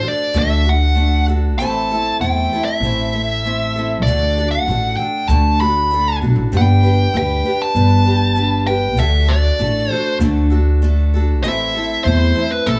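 A dark, smooth electric lead guitar opens this hopeful folk rock and heartland rock excerpt, carrying the melody up front with overdrive and a plate reverb. Beneath it from the very start, a picked acoustic archtop guitar supplies accompaniment with a boxy, woody tone and the dull character of old strings. An upright bass joins at 0.3 seconds, plucked and placed close, with a warm, woody, steel-strung body anchoring the low end. The straight 4/4 feel moves through a simple progression of D, Am and G, giving the fragment a hopeful warmth. A light small-room ambience surrounds the players, lending the brief cut, which runs to 12.8 seconds, an intimate quality.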